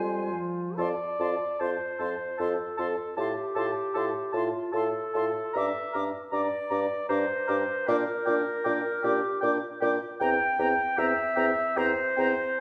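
A clear, up-front clarinet carries the accompaniment in this yearning, melancholic slow romantic movement for wind quintet in an uneven, rubato 3/4, while an airy, vibrato-touched silver flute sings the melody above a distant oboe's second line, a mellow French horn and a punchy bassoon bass, all bathed in the lush reverb of a recital hall as the harmony drifts from F minor into F major and on toward G minor and C7/E in a fragment cut from a longer piece.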